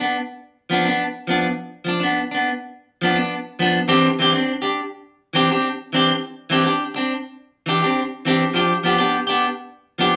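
A studio reverb of moderate length gives this short clip, cut from a longer piece, a roomy, wet sheen around its single voice. A clean electric guitar plays alone from the start to 10.1 seconds, picked and sitting up front, with a warm, clean tone. The style is highlife in a straight 4/4, and the mood is sunny and warm. The guitar stays within a mid register, from E3 up to G4, moving through a short chord sequence of Bdim/F, then Cadd9 at 3.9 seconds and G7 at 8.5 seconds. The result is an intimate, open-sounding solo guitar passage that feels like a glimpse into a larger, cheerful performance.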